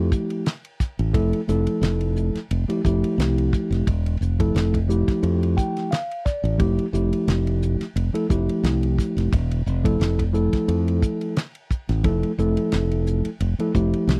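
A lightly swung 16th-note groove at 88 BPM in 4/4 drives this slick electric jazz fusion excerpt in F major, tuned to A4 = 435 Hz, where a damped 1970s drum kit with a fat snare, tight kick, hi-hat and ride cymbal sits up front beside a bright, punchy fingered electric bass, while a mellow tine electric piano heard through its built-in speakers outlines an Fmaj9 harmony and plays a fill from 5.2 to 6.6 seconds, all captured in a dry, close 1970s-style studio sound.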